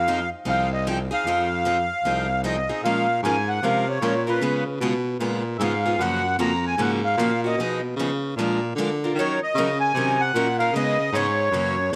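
Set in a small room with light reverb, this fiery, virtuosic gypsy-jazz cut from a longer piece swings at 152 BPM in Bb minor. A reedy, sweet accordion with light tremolo tuning carries the melody up front, while a clear baritone saxophone, also up front, plays the bass line with light vibrato, subtone and scooped notes in jazz style. A bright, fresh-stringed parlour acoustic guitar enters at 0.1 s with picked accompaniment, and the harmony moves from Fm7 to Bbm7 at 2.8 s before winding through Gbmaj9 and Bb7 toward Dbm7.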